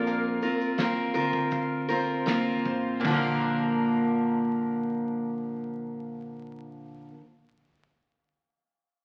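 A short, sunny acoustic pop fragment opens with a bright, full-bodied picked steel-string acoustic guitar up front, its fresh strings and jumbo body carrying the accompaniment with audible finger squeak. A mellow, woody mandolin plays double-string arpeggios beside it, while a clean electric lap steel sings a brief slide melody in the background until 2.2 seconds, and a gut-string upright bass adds thumpy pizzicato notes beneath. A cloth-damped drum kit joins at 0.1 seconds with a fat snare, tight kick, dark cymbals, shaker and toms, its saturated, gritty tone rolled off at the top and kept in the background before it stops at 3.2 seconds. The carefree opening slows as it moves from a suspended chord to a plain major chord at 3.0 seconds, where a new section begins. A wet, large studio reverb and the crackle of a very old 78 rpm record give the whole clip an aged glow.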